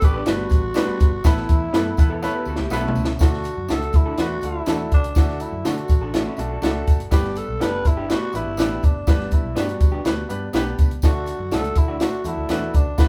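Uplifting and danceable, this uptempo 1960s-style soul excerpt moves at 123 BPM in a straight 4/4 feel in D major, cut from a longer piece. A growling tenor saxophone carries the melody with a raspy, breathy edge, scooped notes and light vibrato, while a clear baby grand piano with short sustain plays accompaniment beneath it. A vintage foam-muted fingered electric bass adds a dark, round low end, and a compact cocktail drum kit sits up front with a high-tuned snare and tight kick, taking a fill between 2.2 and 3.2 seconds. In the background, a jingly tambourine and two slightly broken-up electric guitars through a small old amp fill out the sound, one playing stabs throughout and the other a short riff at 2.2 and again at 6.1 seconds. The harmony moves from G to Asus2, settles on D at 3.2 seconds, then returns through G to D, all captured as a band playing live in one room with light reverb.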